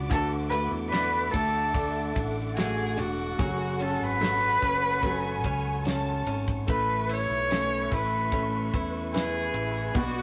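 This rough rehearsal-room recording has a saturated glow and a wet small-room reverb around it, and it plays as a short cut from a longer piece. It is a heartbroken pop ballad in a straight 4/4, moving through add9 chords that give it an aching, unresolved color. A dark, woody solo cello carries the melody up front, bowed with vibrato, while a lush string section holds sustained chords in the background with expressive portamento. Clear concert grand piano accompaniment, a compressed clean electric guitar picking arpeggios, and a fingered electric bass fill out the middle and low end. A damped 70s drum kit keeps time with a fat snare, tight kick and dark ride cymbal. At 5.0 seconds a focused violin section adds a brief high second line that ends at 6.5 seconds.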